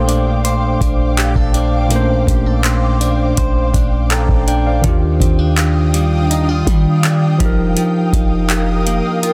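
This short excerpt of smooth, dreamy contemporary R&B opens with a tine electric piano laying down warm, clean chords in Bb major at 82 BPM, with an ethereal, airy pad sustaining above it through ensemble chorus, built-in reverb, tremolo and sidechain pumping. A bright, direct-recorded clean electric guitar plays compressed, picked arpeggios through a digital delay, adding a glinting edge to the harmony as it moves from Bbmaj9 to Ebmaj9 at 4.8 seconds and F9sus4 at 7.4 seconds. Underneath, a deep, sine-toned 808-style bass with a fast attack and dark decay anchors the low end until 9.0 seconds. A booming analog drum machine enters at 0.1 seconds with a deep kick, metallic hi-hats and handclaps, sitting up front with the slight character of a small room. The overall sound is dry, dense and heavily limited in a modern style.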